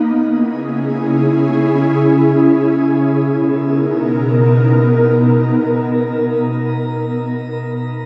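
Dark, heavily reverberant production bathes this short dream pop fragment in a lingering plate space. A single airy, detuned synth pad sits up front in free time, holding mellow, chorused chords from 0.0 to 7.3 seconds with slow attacks and long releases, and adding a glistening shimmer reverb. In B major, the pad moves from C#m, which slows as it unfolds, to Bmaj7 at 3.2 seconds, leaving a blissful, floating mood.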